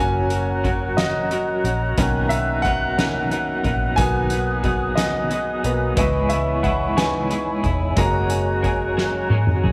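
Light reverb and a small-room ambience surround this tender, romantic six-eight pop ballad at 60 BPM, cut from a longer piece, where a clear, up-front concert grand piano with deep bass, long sustain and audible action noise carries the lead from start to finish. Beneath it, an airy, hollow flute ensemble holds mellow sustained chords with vibrato, a clean, compressed twelve-string electric guitar picks tremolo-tinged arpeggios, and a dark, round, foam-muted fingered electric bass anchors the low end. A soft-mallet drum kit with a fat snare and boomy kick joins at 0.3 seconds and closes with a fill from 9.0 seconds, as the harmony moves from F# through Bmaj7, G#m7/B and C#m7 to F#add9.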